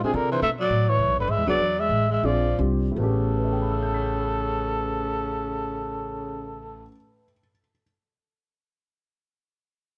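A breathy trumpet melody, a growling tenor saxophone second line, a dark upright piano and a pizzicato upright bass all start together in this short, sophisticated cut of small-group swing and bop in A mixolydian, swung at 151-215 BPM and slowing down between 0.4 and 3.0 seconds. The up-front trumpet is whispered and intimate, with scooped notes and a plate reverb. The tenor is raspy with a smooth top, the piano sounds slightly detuned and vintage, and the woody bass sits up front. The production is dark and warm in a moderate studio room, with nothing above 10.7 kHz, and the piano rings on alone until 7.8 seconds after the horns and bass stop.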